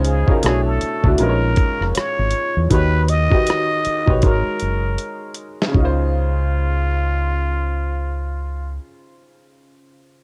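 A compressed, dusty sampler-style drum kit with a thumpy kick, hi-hat, rim click and medium-tuned snare opens this smooth, warm neo-soul R&B excerpt in Db major at 79 BPM with swung sixteenths, alongside a round, dark fingered electric bass and a brilliant, woody upright piano with short sustain, both drums and piano carrying a cassette-tape grit, while a raspy, growling plunger-muted trumpet with light vibrato and a wah-wah jazz character takes the solo melody from 0.1 seconds over chords moving from Cbm11 through Eb7alt to Dbmaj9, the drums playing a fill before stopping at 6.0 seconds and the piano continuing alone to 10.2 seconds in a dry, up-close home recording.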